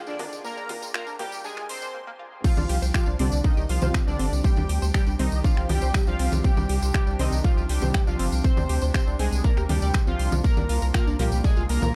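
A punchy, tape-colored electronic kick sits up front from the drop at 2.4 seconds, anchoring this hypnotic, melancholic melodic techno excerpt at 120 BPM in a straight 4/4. Before it, a short build-up carries a filter sweep and a breathy, very quiet pad that drops out at 1.9 seconds, leaving a brief break as the harmony moves from Bb to Csus2. A round, deep analog bass with tube saturation and sidechain pumping joins just after the kick, while a house drum kit with metallic hats, congas, crash cymbal, finger snaps and hi-hat, plus a jingly, close acoustic tambourine, fills out the groove. The melody comes from a juicy, warbling, resonant polysynth with chorus and dub echo, shadowed by a soft, dreamy lead with vibrato and tape echo as a second line high above. Behind them, a tight, driving sequenced synth spins arpeggios through phaser and tape echo, brassy synth stabs cut in, and a reedy, gut-string chamber ensemble holds sustained chords, all pumping against the kick. 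The production is dark and high-pass filtered, set in a digital ambience.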